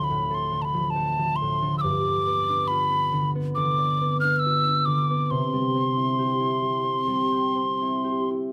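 A mellow, hollow wooden whistle carries the melody up front with an airy tone, gentle vibrato and soft attacks, singing a wistful, nostalgic Celtic slow air in C major at around 68 BPM with a free, rubato feel. A concert harp accompanies alongside, also up front, with ringing, fingerpicked notes, moving from D minor through G7 to settle on C at 5.3 seconds. Close, detailed microphones and light reverb give this short fragment of a longer piece an intimate, unhurried presence.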